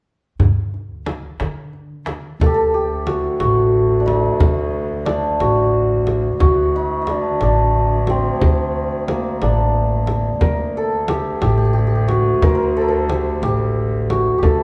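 The rhythm moves in 6/8 with a straight feel, set down from the start by a deep, large frame drum struck with hard hands and heard close and dry, alongside a woody pizzicato upright bass with steel strings. For the opening moments a compressed, saturated tombak sits up front beside them, dropping out at 2.2 s. At 2.4 s the hammered santur enters with the melody, shimmering and ringing at the front of the mix. A single bowed cello arrives with it, holding a low drone played sul tasto, pure and floating with a smooth top, well beneath the santur. This Persian modal ensemble carries a passionate, festive mood, with the santur's lines sounding over the bass and frame drum to the end. The band plays live in one room, and a moderate large-studio reverb gives the sound its space in this excerpt cut from a longer piece.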